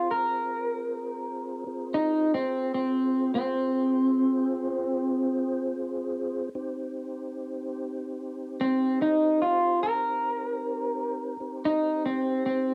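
A mournful, smoky slow blues in 12/8, this short excerpt is cut from a longer piece and sits on an Fm chord before settling onto Cm at 6.5 seconds. An electric guitar through a small old amp carries the melody throughout as a clean solo, its tone slightly broken-up and compressed, picked and placed up front with a subtle chorus. Beneath it, a mellow tonewheel organ holds sustained chords at a much lower level, its flute-like voice colored by chorus vibrato, a slow rotary speaker, audible key click and a cassette-tape character. The two parts play together for the full length of the clip. A moderate small-room reverb and the feel of a home cassette recording give the whole a close, intimate atmosphere.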